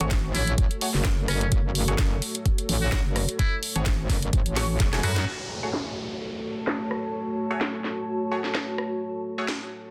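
A bouncy, swaggering bass house groove at 128 BPM in 4/4, swung at 55% on the 16ths, this excerpt from a longer piece sits in F# minor over an F#madd9 chord. An up-front, knocking, tape-tinged electronic kick drives the first half until 4.9 seconds, alongside a house kit with a cracking snare re-recorded in a small room, its hats, snare and room low-pass filtered. A metallic, aggressive FM wobble bass with tube saturation and chorus pumps beneath until 5.3 seconds, while a muted trumpet with a metal mute plays a buzzy, thin, jazz-style solo line with vibrato, sounding distant and roomy through a digital delay. Nasal, band-passed sawtooth chord stabs with ring modulation, phaser, 12-bit sampler grit and delay cut through the mix, layered over a deep, moody, wave-folded analog pad and a warbling, nostalgic lo-fi pad in the background, each pumping to the sidechain. A drum fill from 4.6 seconds and a band accent lead into the second half at 5.3 seconds, where a filter sweeps across the drums and an electronic downlifter descends into a dense, heavily limited finish under light reverb.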